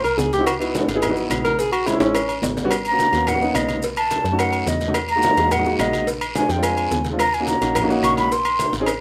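Dry and recorded outdoors with a faint mains hum, this cut from a longer Afro-Cuban jazz piece in G# minor drives along at 214 BPM in a straight 4/4, sultry and fiery at once. A whispered, subtoned tenor saxophone solo opens over dark FM bass, an up-front baby grand piano with short sustain, ringing metal agogo bells and timbales, and distant low-tuned congas, while a tight cowbell, raspy guiro, grainy maracas and woody claves sit in the background; a drum fill arrives at 2.0 seconds. From 2.9 seconds a breathy, unsteady silver concert flute with vibrato carries the melody, and slapback echo colours the saxophone, flute, piano, cowbell, agogo bells and timbales.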